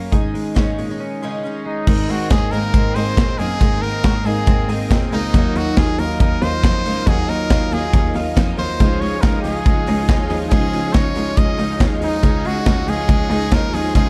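A picked twelve-string acoustic guitar, boxy and shimmering with fresh strings, opens this breezy, youthful slice of jangly indie pop alongside a twangy, compressed twelve-string electric guitar spinning clean arpeggios through a subtle chorus, both set back in the mix. A clear, focused bowed cello carries the bass line with vibrato, and a big rock drum kit lands up front at 0.1 seconds, with bright cymbals, a medium-tuned snare and a boomy kick, moving at 139 BPM in a straight 4/4 in Db major. During a brief break, a brilliant, punchy trumpet enters at 1.7 seconds to take the solo melody, forceful and pop-styled with scooped notes and vibrato, trailed by an analog delay. From 1.9 seconds a very quiet vintage string machine adds soft-attack sawtooth violin chords with an ensemble chorus, over a progression moving through Abadd9, Ebmadd9 and Dbadd9. A buzzy combo organ with heavy vibrato slips in very quietly at 8.8 seconds, all within a dark, warm production with light reverb, in a passage cut from a longer piece.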